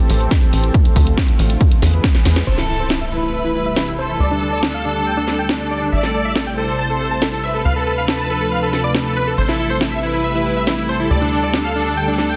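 Uplifting trance at 139 BPM in A minor, euphoric and driving, where a lush chorused pad and a tight, dark sequencer bass pump under a layered techno kit with a cracking snare, an up-front heavy electronic kick drops out as a drum fill and band accent arrive, and at 2.5 s an electronic impact launches a huge detuned supersaw lead with dub echo and a filter sweep, joined by a rich bowed violin section adding a second line with delay, all in a dense, heavily limited modern master cut from a longer piece.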